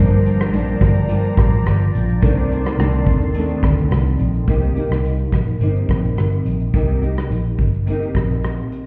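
A straight 4/4 pulse at 106 BPM comes from an acoustic kit played with bundle sticks: a punchy kick, hi-hat, rim click and shaker sit up front beside a dark, round, foam-muted electric bass. In this hazy, mellow bedroom-pop excerpt in C dorian, a bright, fingerpicked classical nylon-string guitar shimmers with chorus and vibrato over Gm7, Cm69 and Cm7. A swirling, detuned sawtooth pad with phaser and chorus drops out at 4.5 seconds, and the whole mix sounds muffled, as if heard through a wall into a stone room.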